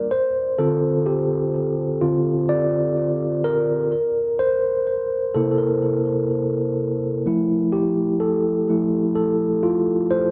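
A mellow tine electric piano plays alone from the very start in this moody, late-night R&B fragment, its clean, up-front tone colored by built-in speakers and a digital delay, moving through Dm7, C7 and Fmaj7 over about 10.3 seconds in a dark production with light reverb.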